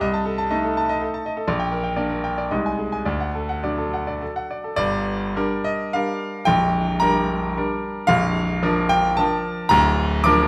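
Dotted rhythms in 3/4 drive this brief excerpt of a rustic, graceful romantic classical dance in G minor, played with rubato at a tempo drifting between 97 and 136 BPM by a solo grand piano whose bright, brilliant, natural and up-front tone spans Bb0 to D6 and rings through a moderate recital hall reverb, its harmony moving from a diminished opening through a D chord to settle on G minor and then Bb by 8.1 seconds.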